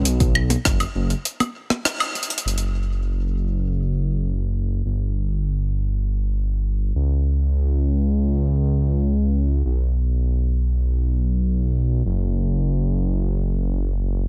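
IDM at 100 BPM in a straight 4/4, this wistful, glitchy excerpt from a longer piece rests on a dark, detuned saw bass that rumbles and beats in the low register from start to finish, up front and saturated. A deep electronic kick opens the passage alongside a gritty, pitched-up, sampler-style jungle kit of hi-hat, rim click, toms and woodblock, compressed and tape-toned with a digital delay. A break arrives at 1.3 seconds, with a band accent at 1.9 seconds and a drum fill at 2.2 seconds, after which the kit falls away and the bass carries the rest in a dry, close sound.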